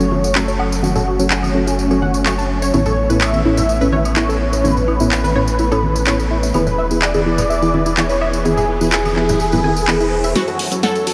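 A thick, nasal unison lead carries the melody in this bittersweet, emotional progressive house passage at 126 BPM in F# minor, sounding over a lush, detuned supersaw pad that holds sustained chords under a filter sweep, soft, full-bodied chord stabs with chorus and analog delay, a round, dark analog bass and a jingly, close tambourine. The lead's vibrato and ensemble chorus give it a bold, singing edge, while a tight, driving sequenced synth spins arpeggios in the background through chorus, phaser and delay, joined by soft-handed congas and woodblock sounding band-limited and vintage. A layered house kit brings a punchy snare, handclaps and tape-warm hi-hats in a straight 4/4 pulse. The harmony moves from F# minor through Aadd9 to E, and a background riser builds from 8.1 seconds toward a drum fill at 10.4 seconds, where the chords return to F# minor and a glassy, crystalline wavetable pluck enters as a second line. 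The whole mix is dreamy and soaked in a huge ambient reverb, and the passage is cut from a longer piece.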